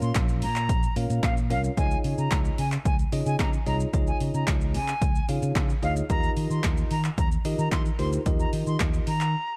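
This dark, warm dance-pop fragment, cut from a longer piece, carries little reverb and an upbeat, euphoric mood in a straight four-four groove. An up-front analog drum machine drives it with a hard-hitting kick and snare, handclaps, hi-hat and shaker, its snare, clap and hats caught in a short, small room. A warm, amped fingered electric bass sits beneath, pumping under sidechain compression, while a bell-like, bright and clean tine electric piano supplies chords that pump in the same way. Over the progression from Bbm through Dbadd9 to Ebadd9, a silver concert flute carries the melody with a pure, tongued tone and vibrato, set distant and trailed by tape echo. The electric piano falls away at 9.1 seconds, and the bass and drums drop out for a break at 9.3 seconds, leaving the flute to ring on until 9.6 seconds.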